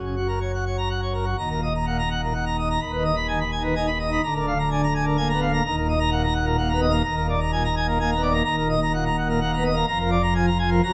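Classical organ toccata in triple metre, brilliant and majestic, cut from a longer piece: a solo pipe organ on full plenum with mixtures plays up front in a romantic voicing, ranging from D1 to Cb6. After a brief opening on an F# chord, the music settles at 1.4 seconds into a passage that alternates minor tonic harmony with dominant-seventh chords over shifting bass notes. A reverberant stone room gives the full registration its grandeur.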